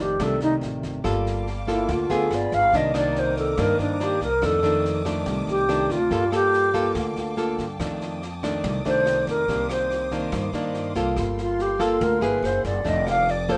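The alto flute opens at once, airy and close-miked with vibrato and tongued notes, carrying a melancholic, smooth bossa nova melody in G minor at 142 BPM in a straight 4/4. Beside it, a fingerpicked nylon-string guitar sits up front with a classical touch, while a pizzicato upright bass on steel strings adds a woody, growly low end. An open jazz kit enters at 0.2 seconds, quiet and dark in a small room, with a boomy kick, rim clicks and a medium-tuned snare. At 1.0 seconds a lush symphonic string section comes in close, bowed with a soft attack and expressive vibrato, holding sustained chords high above the ensemble. The harmony moves through rich extended chords such as Gm9, F13 and Cm9, with a brief F#9 near the end, and light reverb gives the whole a gentle sense of space in this fragment cut from a longer piece.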